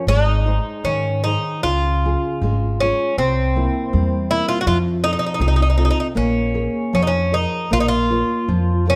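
Bathed in light reverb, this excerpt of a mournful, passionate fado-style ballad in Bb minor moves at 78 BPM in a rubato 2/4, with an up-front Irish bouzouki carrying the melody in metallic, picked double-string tones, a full-bodied nylon-string guitar fingerpicking a deep classical accompaniment with audible finger squeak, and a woody pizzicato upright bass, also up front, entering at 0.1 seconds beneath chords that pass from Ab through Db, C7, F and Bbm7 to Bbm.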